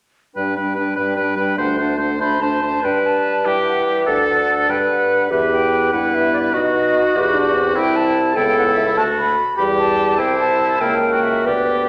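At 0.4 s the five winds begin together in a quick, cheerful and graceful classical-period movement in G major, moving in 6/8 at 98 BPM (counted in dotted quarters) with a rubato feel and tuning a touch low at A4 = 438 Hz. An airy silver flute carries the melody with vibrato and a soft attack, while a close-miked oboe sits up front with its own vibrato on the second line. A clear clarinet and a present French horn fill in the accompaniment. A mellow bassoon with light vibrato and a smooth top anchors the bass. After a short opening phrase over G and D7, a longer passage from 2.8 s wanders through E minor, B and C before landing on a tense C#dim7 near 10.8 s. The quintet rings in a wet recital hall, and this portion is cut from a longer piece, ending at 11.9 s.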